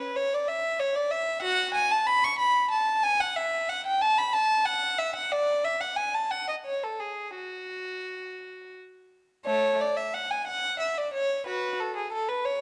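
Radiant and dance-like, this short excerpt from a longer classical piece is a baroque-style suite movement for unaccompanied violin in triple metre, played with a flexible, rubato feel. A single bowed violin carries everything alone from 0.0 to 12.6 s, ranging from A3 up to C#6. Its gut-string tone is rich and reedy, shaped in period style and captured close and up front. The opening phrase runs to 9.5 s, when the same section returns and carries through to the cut. A moderate recital hall reverb, with a decay of about 1.6 s, gives the solo line a sense of space around it.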